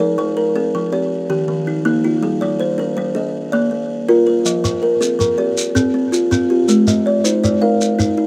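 Two kalimbas open together at 0.0 seconds in a rippling, warm mbira-style interlocking cycle of southern African traditional music, set in 12/8 at 108 BPM in dotted quarters with a straight feel. One kalimba is thumbnail-plucked and buzzing, its woody, ringing tone coming from a hollow box in a boxy small room as it runs arpeggios up to F5. The other is thumb-plucked with a similar wooden body, sits up front alongside it, and carries a slapback echo. Their arpeggios trace an F equiheptatonic cycle through Fm, Eb, Gm and Bb, then return to Fm before moving to Ab. At 4.5 seconds a grainy, mellow shekere enters quietly in a small room, adding soft percussion beneath the plucked parts. The sound is dry and open-air, with little reverb, and this short passage is cut from a longer piece.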